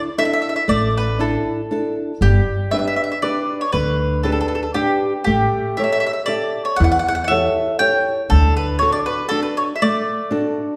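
A fingerpicked flamenco guitar opens this short Italian folk serenade, its warm, up-front tone carrying a faint finger squeak as it lays down the accompaniment. At 0.2 seconds a bright mandolin joins with the melody, its picked double strings sounding round and close. A woody upright bass enters at 0.7 seconds, played pizzicato on steel strings, and holds the low end until 8.5 seconds. The lilting waltz metre has a light swing, and the harmony moves from Dsus2 through G and A7 before settling on D. The mood is romantic and sunny, set in the lush reverb of a church or concert hall, and the passage is cut from a longer piece.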